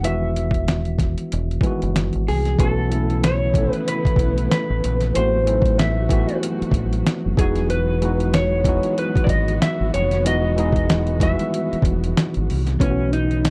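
A relaxed, soulful neo-soul R&B groove at 94 BPM in E major opens on Emaj9, with a gritty, thumpy sampler-style drum kit and a round, punchy fingered bass up front beneath a worn, slightly out-of-tune tine electric piano that is lightly overdriven. An electric guitar through a small old amp carries the melody with a slightly broken-up, lo-fi tone and harmonic tremolo, while a bowed string section enters at 2.6 seconds in the background, adding smooth, expressive sustained chords with vibrato and portamento. The dry, close 1970s-style studio sound moves through B9sus4 and Am6 before returning to Emaj9, in a passage cut from a longer piece.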